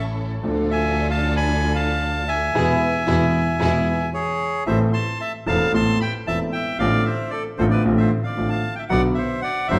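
Tango with a sultry, passionate rubato feel, cut from a longer piece: a reedy, up-front bandoneon carries the melody over woody upright piano with long sustain and a focused, bowed double bass with vibrato, while a lush, distant string section adds expressive portamento stabs until 3.8 seconds, the band accents together from 2.5 to 4.7 seconds, and the performance rings in the reverberant air of a recital hall.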